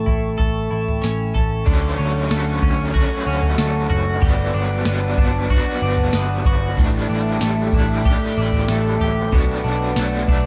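A soft vintage rhythm box with a deep kick, crisp snare, tambourine, toms and crash sits up front at 94 BPM in a straight 4/4 in this ethereal, floating dream pop excerpt in D major, where a round, foam-muted electric bass holds the low end, a bright, twangy twelve-string electric guitar plays clean arpeggios through subtle chorus and tape echo, a warbling, nostalgic tape-like pad sustains chords with chorus and its own reverb, and from 1.7 seconds a lo-fi overdriven garage guitar adds accompaniment with tremolo and analog chorus, set inside a dark, warm production with light reverb.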